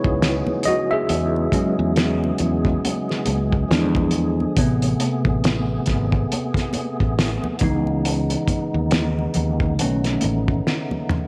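A worn, slightly out-of-tune tine electric piano with fast tremolo leads this relaxed neo-soul R&B fragment, heard through a combo amp over a lightly overdriven tonewheel organ with key click and slow rotary speaker holding sustained chords, a muffled, cloth-damped drum kit with a fat snare and tight kick that closes on a fill at 10.7 s, a warm fretless electric bass, and very quiet, close, high-tuned congas, in a small room with light reverb.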